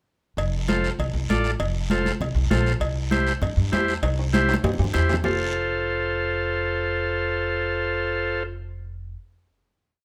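Joyful and festive, this short cumbia piece sets a growly, woody pizzicato upright bass and buzzy vintage combo organ chords up front over raspy guiro, bright damped congas and ringing cowbell and timbales in a large studio room, with a drum fill from 4.0 s leading into a final F chord at 5.2 s as the percussion stops at 5.3 s.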